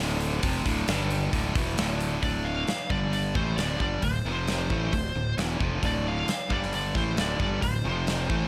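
Hard rock in D minor at 133 BPM, this short, menacing excerpt hits with aggressive force from the first second. A bright, overdriven stack guitar picks the riff up front, joined by a sludgy, warm distorted guitar sitting further back, while a growly, punchy fuzz bass underpins them in the low register. A big acoustic drum kit with a tight kick, medium-tuned snare and hi-hat comes in at 0.2 seconds, mid-forward and up front with a big-room character. At 2.2 seconds a high-gain lead guitar enters with a bright, distorted melody in its upper range, riding over the chords as they move from D minor through G5, D5 and F5 power chords. The mix is dry, with little reverb, keeping the attack raw and immediate.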